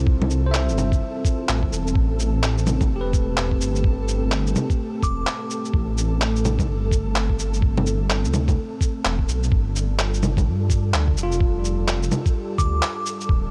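Steeped in digital ambience, this ghostly, rainy future garage excerpt in A minor moves at 127 BPM with a swung 16th-note feel: a muffled, thumpy, tape-warm kick and compressed electronic bongos, shaker and handclaps sit up front over a deep, rumbling detuned saw bass, while a moody, evolving analog pad with chorus and a bell-like tine electric piano with delay both pump against the sidechain, a grainy, flickering texture hovers in the background, and a glassy, warbling synth bell glints briefly at 5.0 and 12.6 seconds as the chords drift from Dm11 to Am7 and on to G5.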